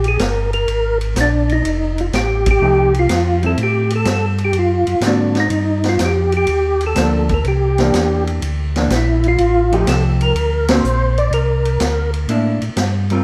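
A percussive tonewheel organ opens the excerpt with a melody between D4 and D5, its round, clean tone colored by chorus vibrato and a slow rotary speaker, while a second, mellow tonewheel organ carries the bass line down to F1 with audible key click and its own slow rotary turn. Underneath, a vintage acoustic drum kit sets a swinging 124 BPM in 4/4, with dark cymbals, a high-tuned snare, a punchy kick and a rolled-off top heard across hi-hat, ride and snare. This is bluesy, greasy soul jazz in the organ trio mold, moving through chords such as F9, Gm7, C9 and an altered D7. A dark, clean hollow-body electric guitar enters at 2.6 seconds, just after the first band accent at 2.4 seconds, adding fingered accompaniment beneath the organ melody. The melody organ drops out at 12.1 seconds, shortly after a second band accent at 10.6 seconds, and the whole performance sits back in a moderate echo-chamber reverb, as if heard from further back in the room.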